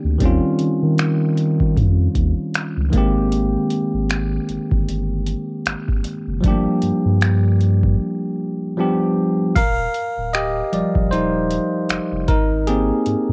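Swung sixteenths drive a slow 4/4 groove in this sensual, longing contemporary R&B excerpt. A booming, overdriven analog drum machine enters at 0.2 s with a deep kick, metallic hi-hats, finger snaps and crash cymbal, alongside a round, sine-like sub bass. Up front, a bell-like tine electric piano with a cassette-tape tint moves through lush chords such as Eb13 and Abmaj9, then takes a solo from 9.6 s to the end after a break at 8.0 s, all captured in a dry, intimate home cassette recording.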